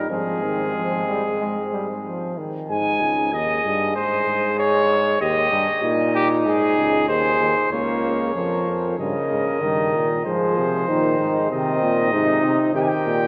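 A soft-attacked, vintage-toned trumpet sits up front carrying the melody in this solemn, contemplative classical brass canzona in Ab major at 95 BPM, with a mellow, smooth-topped flugelhorn on the second line, a distant bass trombone holding the low end, and a trombone with the same bright, lightly vibrato-tinged timbre that drops out at 2.7 seconds and returns at 7.7 seconds, all bathed in a wet, cathedral-like reverb in this short cut from a longer piece.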